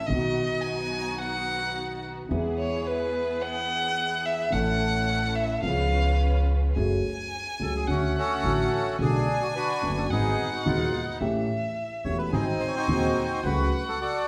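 A rubato 4/4 pulse at 108 BPM drives this dramatic, passionate tango fragment, where an expressive bowed violin with vibrato and portamento takes a solo until 6.8 seconds over a dark, mellow grand piano, a woody pizzicato upright bass and distant, lush string-section stabs that stop at 6.7 seconds, before a reedy, up-front bandoneon enters with the melody at 7.6 seconds while the violin carries a second line, all set in the warm glow of a reverberant church or concert hall.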